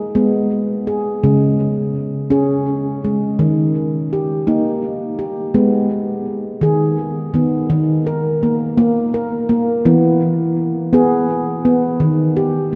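A solo handpan rings out up front with ringing nitrided-steel tones struck by fingertips, carrying a gentle, meditative world piece in a steady 6/8 through two brief sections, its notes trailing into a diffuse ambient delay and a long cathedral reverb that places it in a vast, echoing space, in a passage cut from a longer piece.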